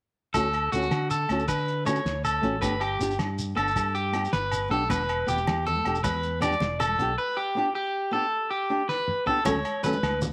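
A 12/8 pulse at 105 BPM drives this sunny, joyful highlife guitar band excerpt in D major, with a muffled, cloth-damped drum kit (fat snare, tight kick, gritty saturation) under ringing agogo bells, a grainy shekere and high-tuned congas that join at 4.9 seconds. Up front, a twangy, slightly broken-up electric guitar picks arpeggios through a slapback echo, while a warm flamenco guitar with audible finger squeak fingerpicks accompaniment and a dark, round fingered electric bass anchors the low end. The chords move from Dmaj7 to G to Em7 in a small, lightly reverberant room, and a drum fill at 8.9 seconds leads back to Dmaj7.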